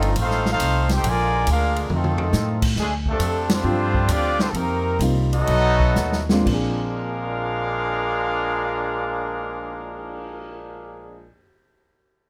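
This short cut from a longer big band swing piece opens with everything but the piano at once: a trumpet section carrying the melody up front, a muted trombone section on a second line, an upright bass and a swinging drum kit. A second, very quiet trombone section holds sustained chords only until 2.8 seconds. The mood is joyful and swinging, in 4/4 with a firm swing feel and a tempo between 118 and 138 BPM that slows from 2.8 to 6.5 seconds. The trumpets sound smooth on top with light vibrato, the straight-muted trombones are nasal and bright, and the pizzicato bass is woody and close. The drums, with a punchy kick and a medium-tuned snare, play fills at 1.9 and 6.0 seconds, and the band hits an accent at 3.4 seconds. A vintage grand piano joins with accompaniment at 3.6 seconds, the harmony moving through dominant and suspended chords in a moderate club-sized reverb.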